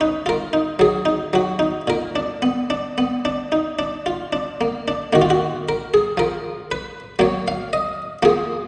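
A wet reverb from a large scoring stage surrounds this short fragment, heard from farther back in the room with a dulled top end above 10.9 kHz. It is a grave, solemn baroque-style suite movement in triple metre, cut from a longer piece and played with a free, rubato feel. A single buff-stop harpsichord carries everything, sounding muted and lute-like, plucked and airy, in the Italian style, though its own tone is dry and sits up front within that reverberant space. Its lines span from Bb2 up to F5, moving from B and Bb harmonies in the opening phrase to a high Eb5 at 5.1 s, where the opening material returns. The fragment closes on an Ebm/Gb sonority at 7.2 s before breaking off at 8.7 s.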